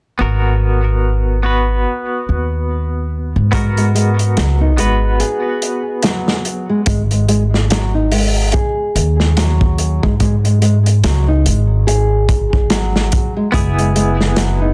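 A dense, heavily limited modern master with light reverb and small-room ambience frames this smoky, cinematic trip hop passage in G# minor, cut from a longer piece and moving at a slow 72 BPM with a 16th-note swing. A woody, thumpy pizzicato upright bass sits up front throughout, beneath a clean, compressed semi-hollow electric guitar whose picked accompaniment is coloured by tremolo and tape echo. At 3.5 seconds a dark, fingerpicked nylon-string guitar joins with small, filtered arpeggios, also carrying tape echo, alongside a crunchy breakbeat kit of tight kick, medium-tuned snare and hi-hat, saturated and gritty with a rolled-off top. After a break, the second section arrives at 6.9 seconds, moving from the opening G#m7 to a bare G#5 as the electric guitar drops out, and the electric guitar returns at 13.5 seconds over an F#7sus4 to close the passage.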